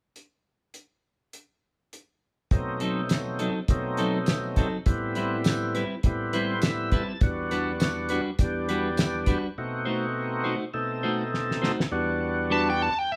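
Straight-eighth soul blues with a soulful, smoky mood, cut from a longer piece and played live in one room with light reverb. A cloth-damped, thuddy drum kit with a fat snare, tight kick, hi-hat and tambourine opens alone. At 2.5 seconds a thick tonewheel organ with key click, slow rotary speaker and light overdrive comes in over B7b9, Am9 and Em9 chords, soon joined by clean, picked electric guitar stabs, with an organ fill at 6.0 seconds; after a drum fill, a biting, overdriven lead guitar melody arrives up front at 12.5 seconds as the passage cuts off.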